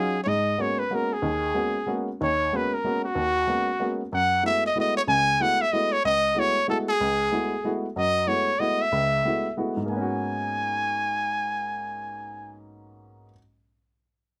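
A swung 3/4 lilt at 187 BPM carries this hypnotic, spiritual jazz passage in G# minor, cut from a longer piece, where a bright, punchy trumpet plays the solo melody up front with light vibrato over a warm baby grand piano accompaniment moving between G#m11 and F#m11, set in light reverb with close, detailed microphones and a faint mains hum, the trumpet stopping at 12.6 seconds as the piano carries on to 13.4.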